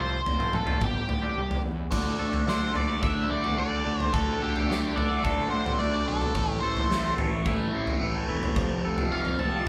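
A stone room's moderate reverb surrounds this angsty, dark quiet-loud alternative rock excerpt at 108 BPM in straight 4/4, where a dark, distorted octave-fuzz lead guitar carries the melody and takes a solo from 1.9 s, a twangy clean electric guitar picks arpeggios in the background, a growly fuzz bass adds punch, a big acoustic drum kit with punchy kick, snare, toms and crash sits up front from 0.3 s, and a cranked stack guitar, overdriven with phaser, crashes in with a riff at 1.9 s as the chords move from F through Gsus4 and Dsus4 to Am and back to F.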